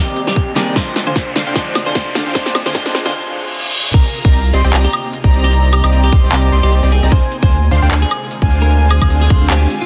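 A thick, saturated sine sub bass anchors the drop of this lush, emotional future bass excerpt, arriving at 3.9 seconds to join an up-front, hard-clipped electronic kick and a layered big-room kit of huge snare, crisp hats, handclaps, woodblock and crash that play from the opening moments. Before that, the half-time, lightly swung groove builds through a drum fill, a background riser and reverse cymbal, and filter sweeps on the punchy, detuned supersaw stab riff and the ethereal, granular pad that pull tension toward the drop. A twangy, clean electric guitar carries the melody with chorus and delay, while a brilliant grand piano sits in the background as accompaniment until 4.0 seconds. After the drop, an airy, dreamy lead adds high arpeggios with vibrato, and the bass, guitar, supersaw and lead all pump with sidechain. The harmony moves between Cm9 and Dm7b5, and the dense, heavily limited master carries light reverb.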